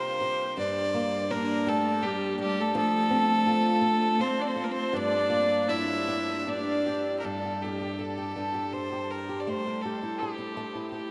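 Longing and mournful, this rubato Celtic slow air in 3/4, cut from a longer piece, sets a biting, nasal fiddle melody up front with a diffuse ambient delay over boxy fingerpicked swing-style acoustic guitar with lush chorus, while a smooth viola with vibrato adds a second line from 1.3 to 7.2 seconds, all soaked in a huge, dreamy reverb.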